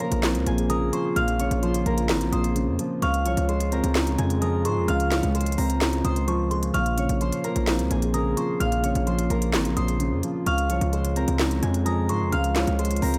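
A ringing, fingerpicked concert harp opens this eerie, brooding trap excerpt in Bb minor, carrying the melody with a trail of delay alongside a dark, mellow grand piano playing accompaniment and a trap kit of sharp snare, crisp hi-hats and handclaps. The kit, electronic and produced, sounds re-recorded in a large room, and it moves in a half-time feel at 129 BPM in 4/4. At 0.1 s a distorted 808-style bass arrives, heavy, saturated and up front, its sine tone layered with noise and decaying after a fast attack. A warbly, lo-fi tape-like pad enters at 0.2 s, holding detuned, nostalgic chords in the background with chorus and its own reverb, while a delicate FM tine bell tinkles high above as a second line, treated with chorus, phaser and delay. The harmony alternates between Bbmadd9 and Dbmaj7, and the overall mix stays dry and loud.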